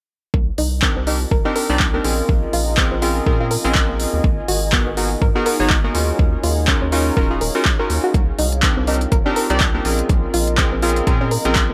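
Detuned, wave-folded analog key stabs with chorus and tape echo sit up front in this smooth, late-night deep house excerpt at 123 BPM, swung on the sixteenths in C phrygian with A4 tuned to 435 Hz, over Cm9, Bbm9, Abm9 and Ebm9 chords. A deep electronic kick and a rubbery, nasal square-wave bass with tube saturation and sidechain pumping drive the groove, while a layered drum kit of handclaps and smooth hi-hats joins at 0.6 seconds. Further back, a soft, round pluck plays dark, chorused arpeggios with tape echo, and a moody, full-bodied pad with a slow attack and its own reverb enters at 1.2 seconds, all set in a light reverb.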